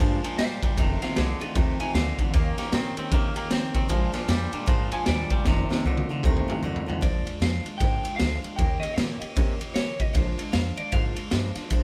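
A swinging 154 BPM groove drives this rollicking, upbeat rockabilly excerpt in Bb mixolydian, where a gritty, boomy garage drum kit sits up front with a fill from 5.5 to 7.0 seconds, a woody, growly pizzicato upright bass thumps in the background, a full-bodied jumbo acoustic guitar picks out the accompaniment, a clean, compressed twangy electric guitar plays a riff until 7.0 seconds, and a slightly broken-up electric guitar through a small old amp carries the melody with spring reverb over a live-room sound that moves from Bb7 through F7 and Eb7.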